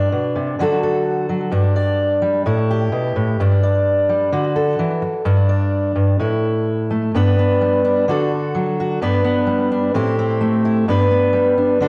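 A full-bodied, fingerpicked steel-string dreadnought guitar sits up front and plays alone with a slapback echo in this sunny, carefree highlife clip in G major at 128 BPM, its warm opening passage giving way at 7.1 seconds to a second idea that touches an Am7 before resolving to G, all bathed in a long, wet plate reverb.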